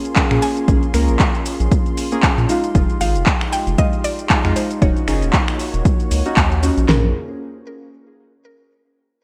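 An up-front, overdriven deep house kit of punchy kick, fat snare, handclaps and toms drives this smooth, deep house excerpt at 116 BPM in Bb minor with a swung 16th-note feel. It is layered with a second overdriven kit of finger snaps, handclaps, metallic hi-hat and shaker with gated reverb, a round, dark analog bass under sidechain pumping, soft, deep chord stabs with lush chorus, filter sweep and delay, a mellow, detuned sawtooth pad that also pumps, and a woody FM mallet-like pluck melody sitting in the background with chorus and delay. The harmony moves through Bbm7, Fm7 and Ebm7 within light reverb and bright 1980s-style digital production.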